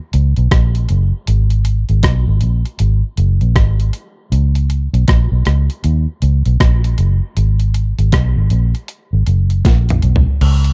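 Smooth and longing, this lovers rock reggae cut from a longer piece pairs a dark, round, foam-muted vintage electric bass with a clean 12-bit drum machine of thumpy kick, medium-tuned snare, rim click, hi-hat, toms and crash, both up front in a dry, dusky production, with a drum fill at 9.7 seconds.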